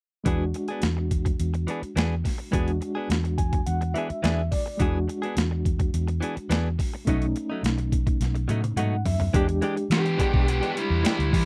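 Gritty and rollicking, this straight-eighth soul blues rides on a pitched-down, compressed boom bap sampler-style drum kit with a thumpy kick, a high-tuned snare and a crunch of overdrive, up front beside a dark, round, foam-muted fingered electric bass. A reedy electric piano with medium tremolo supplies accompaniment and fills starting around 3.1 seconds, while a clean, scooped, direct-recorded electric guitar adds picked stabs over E7 and B7 harmony. At 9.3 seconds the harmony moves to E7#9, and at 9.9 seconds a picked, compressed overdriven electric guitar enters up front for a short solo, captured in a dry, close 1970s-style studio sound.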